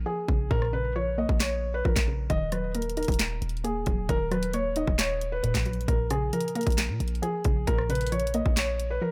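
Eerie and hard-hitting, this half-time trap and hip hop passage in Eb minor moves at 134 BPM in 4/4 and is cut from a longer piece. A felt-muted upright piano carries the melody between Ab4 and Eb5, its intimate, thin-felt tone up front with audible action noise, softened by a low-pass filter and tape echo. Beneath it, a soft round pluck with a dark, chorused edge and a ring-modulated noise layer fills in the accompaniment from Bb2 to Eb4. A deep, boomy 808-style bass with a sine body and fast, decaying attack anchors the low end from Eb1 to Bb2. The trap drum kit enters at 0.3 seconds, up front with a hard-clipped kick, sharp snare, bright hi-hats, handclaps and rim clicks, re-recorded in a small room. The harmony shifts from Bbm to Ebm at 2.3 seconds and back to Bbm at 5.9 seconds, all held in light reverb and digital ambience.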